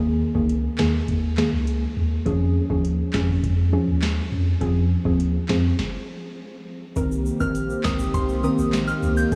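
A soft, round pluck with chorus and sidechain pumping sits up front over a punchy, pitch-dropping sub bass and a booming, tape-toned analog drum machine with a deep kick, crisp snare, metallic hats and handclaps. Together they carry this sultry, hypnotic dancehall cut at 102 BPM in C phrygian, moving through Ebsus4, Db and Fm before a stop from 5.8 to 7.0 s. At 7.0 s the groove shifts to Cm7 as a smooth, detuned analog pad and a ringing egg shaker in the background join, and at 7.4 s a pure, full-bodied FM bell melody enters high above with diffuse ambient delay, all inside a dreamy mix soaked in a huge reverb.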